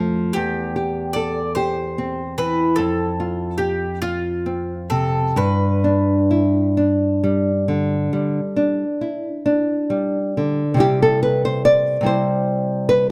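In a rubato 12/8, this serene romantic duo pairs a bright, picked bowl-back mandolin melody on double strings, entering at 0.3 s and stopping at 9.4 s, with a fingerpicked nylon-string guitar accompaniment whose warm, woody, small tone and old strings sit up front and carry on alone until this fragment of a longer piece ends at 13.1 s, caught by close, detailed microphones with light reverb.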